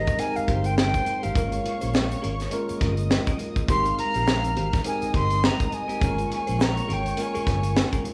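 A breathy, close-miked silver flute carries a tongued, straight-tone melody over tine electric piano, fingered electric bass, a twangy clean guitar riff and a sul tasto string section set in the background, with a tight funk drum kit with high-tuned snare sitting up front, and quiet congas and a grainy egg shaker filling in this lush, romantic 1970s-style soul piece at 103 BPM with a gentle sixteenth-note swing, rocking between Abmaj9 and Bbm7/Ab in a large studio room where the band plays live together in this short excerpt from a longer piece.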